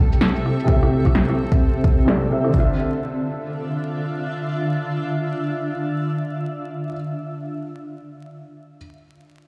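A felt-muted upright piano and a cloudy, evolving granular cloud pad open this nocturnal, ghostly future garage piece at 129 BPM in D minor, the piano soft and intimate through a low-pass filter, tape echo and sidechain pumping, while the full-bodied pad sustains slow-attack chords in its own built-in reverb, moving from C6 to Dmadd9 at 2.5 seconds. Overdriven electronic drums with 61% swing on 16ths join briefly: a layered shaker, punchy snare and rim click under a filter sweep from 0.1 seconds, and a deep, up-front kick from 0.7 seconds, both stopping by 2.7 seconds. A lush hall reverb, a big-room sound system character and vinyl crackle surround this short cut from a longer piece.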